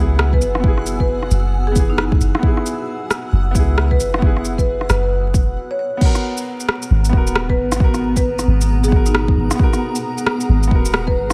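A swung 4/4 future garage groove rides on a deep, up-front electronic kick and a tape-warm deep house kit of crash cymbal, rim click and shaker in a small room, while a soft, round 808-style bass sits low and pumps to the sidechain along with the piano and pad. A clear, woody upright piano with dub echo and a cloudy, evolving granular pad carry the wistful, nocturnal harmony, a mid-forward marimba with medium mallets sings the melody through its own echo, and a bright, reversed swelling texture drifts dreamily in the background until 5.6 seconds. After a short break, the music moves into a new section at 6.0 seconds, all of it coated in vinyl crackle in a dry mix.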